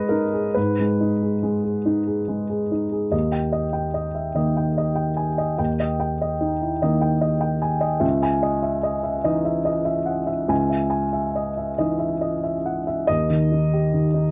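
A lone upright piano opens this brief excerpt from a longer neoclassical minimalist piece, its tone dark and woody, sitting up front in a dry, close studio sound with a 1970s character and only light reverb. The mood is reflective and wistful, unfolding slowly at 48 BPM in 6/8, with uneven beats and a rubato feel that lets the pulse breathe. The harmony begins on G#m, moves to D# at 3.1 seconds, settles into C#madd9 at 8.0 seconds, and returns to D# near the close. The piano ranges from C#2 up to G#5, and its mellow, long-sustaining tones linger between chord changes. The instrument is tuned to A4 = 439 Hz.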